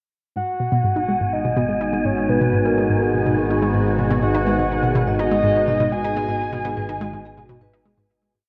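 A straight 4/4 pulse at 124 BPM drives this expansive, cosmic piece of sequencer-driven space music in G# minor, which rests on a single G#m7 chord. A bright, detuned analog pluck repeats a 7-step loop that drifts against the bar while a filter sweep runs through the synth arpeggio. An up-front, octave-layered lead with vibrato and tape echo sings a free, round melody over a warbling, resonant pad, an evolving sawtooth drone with phaser that enters at 1.3 seconds, and an airy, wind-like noise texture holding a dark high note. From 4.2 seconds a mellow, soft-mallet vibraphone adds a 5-step arpeggio loop in the background, and the piece fades out from 5.5 seconds inside a vast cathedral reverb.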